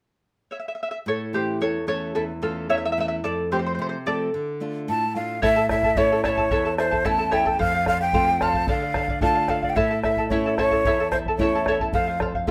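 This Andean folk ensemble opens at 0.5 seconds with a shimmering, fingerpicked charango, its double strings and some octave-doubled courses sounding up front. A bright, classical nylon-string guitar with fresh strings soon joins underneath, also fingerpicked, while the charango carries a solo passage over a harmony that cycles through A, F and D minor. At 4.9 seconds a breathy large quena takes the melody, its wooden, end-blown tone close-miked and forward, with vibrato and tongued notes. A deep, dark bombo, set in a small room, enters at 5.4 seconds to anchor the straight 2/4 pulse at 110 BPM. The mood sits between melancholy and festivity, and a moderate studio reverb gives the ensemble a modest sense of space in this short excerpt cut from a longer piece.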